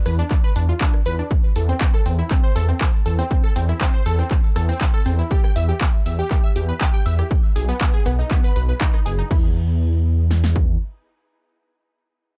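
Dark and dramatic, this cut from a longer melodic techno piece drives at 120 BPM in a straight 4/4 as an overdriven, up-front kit of heavy kick and punchy snare pounds beneath pumping, overdriven crash, handclaps, hi-hat, rim click and shaker, while a deep, rumbling detuned saw bass beats and pulses from F#1 to E2 and a lush, wave-folded unison pluck spins filter-swept arpeggios through cassette-tape grit and tape echo over Dm/E, C/E and B chords, the pluck falling away at 9.5 seconds, all in a dry, gritty hardware sound.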